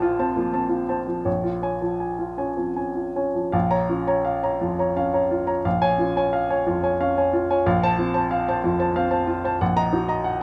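A warm, up-front baby grand piano plays alone from the first moment in this intimate, reflective neoclassical minimalist fragment in Bb minor, unfolding in a rubato 3/4 at roughly 77-93 BPM, reaching from deep bass to the upper register under light reverb as its chords shift from F over Bb to Bbm7 and then into a new passage at 3.5 seconds before the clip ends at 10.4 seconds.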